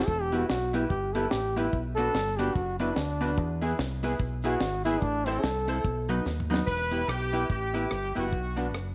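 A clear trombone solo with scooped notes and light vibrato leads this driving, mischievous ska excerpt in E minor at 146 BPM with a swung feel, over bright, woody upright piano stabs, a round, punchy fingered electric bass, a deep reggae drum kit with a high-tuned snare and tight kick that plays a fill at 6.3 seconds, mellow, clean electric guitar accompaniment and a grainy cabasa with tape echo in the background, before a distant, roomy horn section enters with the melody at 6.7 seconds, all inside a moderate echo-chamber reverb.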